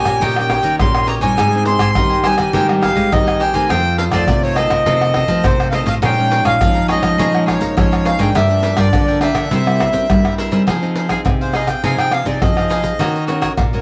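Nostalgic and yearning, this fragment of samba and choro in F minor moves at 103 BPM, with a reedy, slowly beating accordion up front carrying the melody over a mellow jazz trombone second line with light vibrato in the background, crisp picked cavaquinho, a full-bodied fingerpicked classical nylon-string guitar, a second nylon-string guitar on bass with fresh strings and audible finger squeak, and a vintage, band-limited, hard-handed percussion group of egg shaker, deep surdo, pandeiro and tamborim set close in a light reverb, until the trombone falls away at 10.7 seconds and the accordion takes a brief solo.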